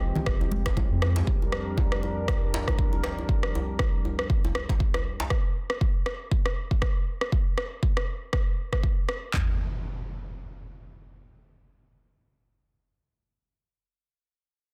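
Driving 119 BPM afro house with a 16th-note swing and a spiritual mood, this short cut opens on a smooth, warbling analog pad with chorus holding Fmadd9 then Gm/F, a round sine sub bass that pumps briefly, bright damped congas and a small-room djembe, while an up-front, overdriven electronic drum kit with deep kick, handclaps and toms plays alongside a gritty rim click until about 9.3 s, when an electronic impact takes over in a dry, dense, heavily limited mix.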